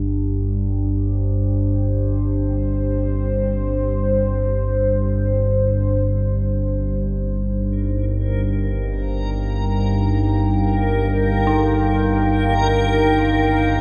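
Steeped in a huge reverb, this vast, ominous ambient excerpt sets a rumbling, up-front drone beneath a moody sawtooth pad that fades in with chorus and phaser, while an eerie, inharmonic FM synth bell fades in with arpeggios from the background through chorus and delay, and a reversed, granular texture swells in at 8.3 seconds as the harmony moves from Gm to Eb.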